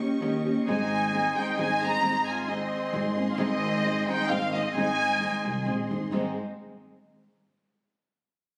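Mariachi Mexican folk in a festive, romantic 3/4 at 132 BPM with a light swing, this Ab major excerpt opens on an Eb7 that resolves to Ab at 0.7 s, where a lush, up-front bowed violin section takes the melody with expressive vibrato over a fingerpicked, full-bodied nylon-string guitar, a woody, growly pizzicato upright bass entering at 0.2 s, a softer background violin section holding sustained chords with portamento, and a clear, smooth-topped classical trumpet playing a second line, all set in a recital hall reverb and captured with a phone's room sound and compression.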